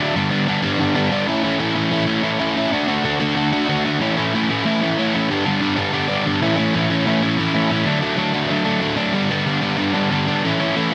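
A crunchy, double-tracked overdriven electric guitar plays alone and up front through this rowdy, rebellious punk fragment in A mixolydian at 187 BPM, picking out a half-time feel over G, A and D chords from 0.2 to 10.4 seconds, with light reverb and a dense, heavily limited modern master.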